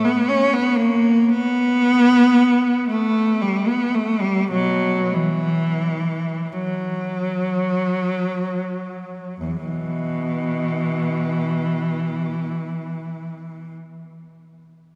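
A single bowed cello sounds close and up front inside a wet cathedral reverb whose 4.0-second tail lets every phrase hang in the air. This classical excerpt, cut from a longer piece in E minor, moves in a free, rubato 6/8 with the pulse drifting between 16 and 42 BPM in dotted quarters. The mood is mournful and lonely, carried by one player whose rich tone is shaped by expressive vibrato and portamento across a range from E2 to C#4. Over the first 9.4 seconds the playing gradually slows, before a new section begins at 9.4 seconds and runs to the close at 13.8 seconds.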